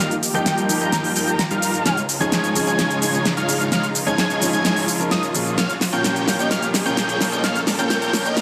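Festival progressive house at 129 BPM in 4/4, this euphoric, powerful build-up excerpt sets a dense, compressed supersaw riff under a sweeping low-pass filter against a nasal, warbling unison lead playing high arpeggios, a clear grand piano with audible action noise, and a very quiet, lush symphonic string section holding chords, with tape echo on the piano, lead and supersaw. Up front, a big-room dance drum kit drives a fill throughout with a huge snare, crisp hats and shaker, while a detuned saw bass sits barely audible beneath and a faint riser enters at 3.0 s. A breathy, flute-like synth melody with chorus surfaces in the background at 0.3 s and again at 6.4 s as the chords move through Ebadd9, Dbadd9 and Bbm, all bathed in a huge ambient reverb and a heavily limited modern master.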